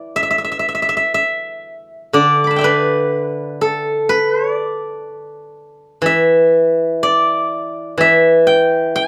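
Rubato and unhurried at around 61 BPM in 4/4, this short cut from a longer Chinese traditional piece for solo plucked strings flows with a pastoral calm in the D zhi mode. A steel-string zither plays alone and up front for the full 9.1 seconds, its fingerpicked tone silvery and ringing across a span from D3 to D6. A modest small-room reverb surrounds it in a rough home-demo mix.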